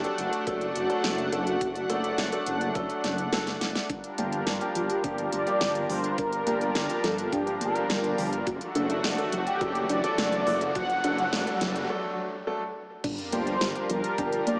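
Synthwave at 105 BPM in a straight 4/4, driving and nostalgic, cut from a longer piece: a mellow, brassy synth lead carries the melody with chorus and tape echo over a lush, warbling unison pad that pumps against the beat, low-pass-filtered stabs from a clear grand piano, and a dark, rumbling detuned saw bass. A pop drum kit with a fat snare and crisp hats sits over a knocking electronic kick, and a drum fill at 3.5 seconds brings in a soft, round pluck playing arpeggios in the background under a filter sweep, while chords move between D/F# and Gm7. A riser and sub drop enter at 7.0 seconds, leading through a break into an impact at 13.0 seconds, all bathed in wet plate reverb with a small-speaker sound.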